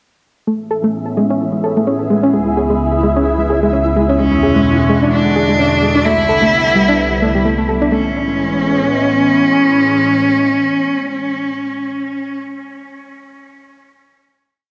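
This wistful, glitchy IDM piece in A major opens at 0.5 s with a swirling, nasal analog pad holding sustained chords through phaser and chorus, while a soft, round pluck spins a repeating 16-step arpeggio sequence, darkened by cassette tape and analog delay. A flickering, grainy granular texture soon hovers high above, holding a detuned note bathed in its own reverb. The groove moves at 129 BPM in 4/4 with a light swing on the sixteenths, drifting through Amaj7, C#m7, E7 and a wistful Cmaj7. At 4.2 s a rich, focused cello enters with a bowed, free-flowing melody, its vibrato trailing dub echo. At 7.9 s the music settles onto a final Amaj7 chord, where the evolving pad and the cello ring out together in an echo-heavy mix with moderate plate reverb.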